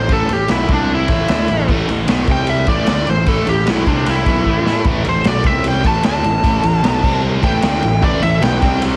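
A smooth, overdriven lead guitar solos up front across this driving, heavy hard rock cut in A minor at 151 BPM, over a sludgy, double-tracked distorted guitar riff set in the background, a round fuzz bass and a raw, gritty garage drum kit with a punchy kick and a fill at 4.5 seconds, all in a small room under a heavily compressed radio sound.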